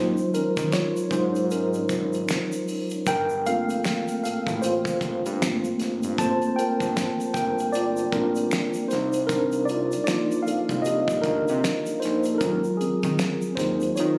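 This R&B and neo-soul excerpt, cut from a longer piece, carries a soulful, introspective mood with a swung sixteenth-note feel in 4/4. A mellow tine electric piano sits up front, clean and heard through its built-in speakers, taking a solo across the whole clip over Ebm11, Gm11 and Cm11 chords. Beneath it, an analog bass adds a thick, fat sawtooth tone with detuned voices, a fast attack, sustained notes and a filter sweep that keeps the sound evolving. A damped 70s drum kit joins at 0.3 seconds with dry hi-hat, a tight kick and a fat snare. The tube shaker and finger snaps, along with a group handclap, arrive at 0.2 seconds and sit low in the mix with a live-room character. The recording has little reverb and was captured on a phone in the room.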